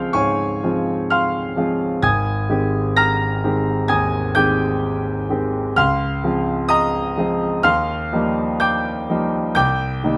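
Hazy and dreamy, this short impressionist classical passage for solo concert grand piano drifts in a rubato 4/4, its clear, open tone reaching from deep bass to high upper notes, heard up front through close, detailed microphones with light reverb, as the harmony glides from Dbmaj7 through Abmaj7, back to Dbmaj7 and on to Ebadd9 before arriving on Cm7 near 9.6 seconds.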